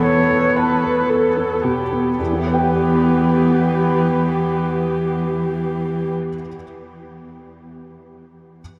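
Drenched in a huge, dreamy reverb, this fragile, reflective fragment of neoclassical piano and strings in a rubato 3/4 slows over its first 2.2 seconds as a dark, sul tasto cello with tape echo and a nasal, woody viola sit up front beside a shimmering, retro pulse-width pad with lush chorus, all three stopping at 6.1 seconds while the soft, felt-muted upright piano, mellow with audible action noise and an ensemble chorus, carries on alone to 8.6 seconds.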